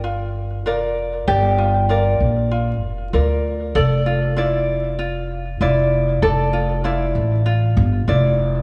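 A fingerpicked ukulele plays bright, light arpeggios with tape echo over a woody, thumpy pizzicato upright bass on gut strings. Both sit up front from the very start of this playful folktronica excerpt, at 97 BPM in 4/4 with a gently swung sixteenth feel. The harmony moves from Gm7 to Dmadd9/F at 3.8 seconds, while a moderate scoring-stage reverb, vinyl crackle and small-room ambience give the brief passage a warm, lived-in air.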